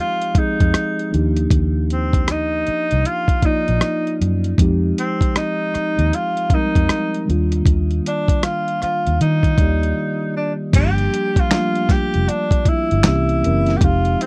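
A mellow tine electric piano swaying between Fm9 and Ebmaj9 chords and a clear, distant tenor saxophone melody with soft attacks, vibrato and scooped notes open the excerpt. At 0.2 seconds they are joined by a loose, swung sixteenth-note groove from a dusty, sampler-style drum kit, gritty and compressed with a thumpy kick, finger snaps and rim clicks, setting a relaxed, sensual neo-soul R&B mood. A dark, round, foam-muted electric bass follows at 0.4 seconds. After a brief break at 10.0 seconds, the harmony shifts to Gm7 and C7b9 in this dry, close, 1970s-style studio excerpt cut from a longer piece.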